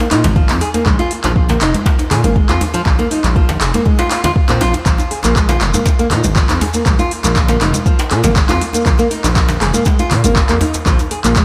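Lightly reverberant, this spiritual, warm afro house excerpt sets a bright, up-front, fingerpicked nylon-string guitar with sidechain pumping and delay over a smooth, gliding sawtooth synth bass with vibrato and portamento, a deep electronic kick, an overdriven deep house kit of handclaps, metallic hats and toms, very quiet close congas, a saturated djembe with metal rattles in the background, and grainy maracas that enter at 4.9 s.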